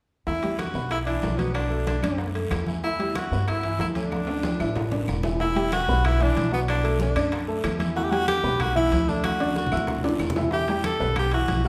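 A straight 4/4 salsa pulse at 187 BPM drives this joyful, festive clip from a longer piece, with a punchy, close-miked tenor saxophone singing the melody with vibrato up front over a slightly detuned, short-sustained upright piano moving through Em7 and Bm7, a dark, thumpy pizzicato upright bass, thick-skinned low congas, ringing metal-shell timbales, a raspy guiro, tight high-tuned bongos and woody claves, with drum fills at 4.1 and 9.2 seconds and a recital-hall reverb giving the whole a church-like glow.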